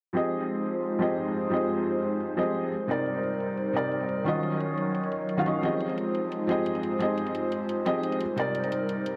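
Liquid drum and bass at 175 BPM in F minor, this dreamy, melancholic excerpt from a longer piece sets a felt-muted upright piano up front, its soft, intimate tone passed through a low-pass filter and analog delay, over an airy, breathy pad of slow-attack sustained chords thickened by chorus and a detuned, noise-tinged layer. An electronic hi-hat with a tape-warm, layered sound sits in the background under its own low-pass filter, and both the drum and the piano carry a filter sweep across the full 9.2 seconds. The chords move through Fm7, Cm7 and Ebm7 in an echo-heavy mix bathed in spring reverb and small room ambience.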